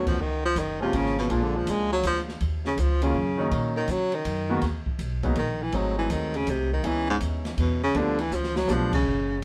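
Light reverb places this short excerpt in a single room where the band plays live, giving it a moody, cool air. It is small-group swing and bop in 3/4 at 162 BPM with swung eighths, in Eb minor, and it is cut from a longer piece. A warm baritone saxophone solos throughout, sitting up front with vibrato and a soft subtone. A clear grand piano accompanies with an intimate, polished tone, its action noise audible and its notes sustaining long, until it stops at 8.9 seconds. Pizzicato upright bass gives a woody foundation. The acoustic drum kit sounds smooth and rolled-off, with dark cymbals, a medium-tuned snare and a boomy kick, and it plays a fill from 8.3 to 8.7 seconds, while the chords move from Bbm7 through G#7b9 and C#m9 to G9.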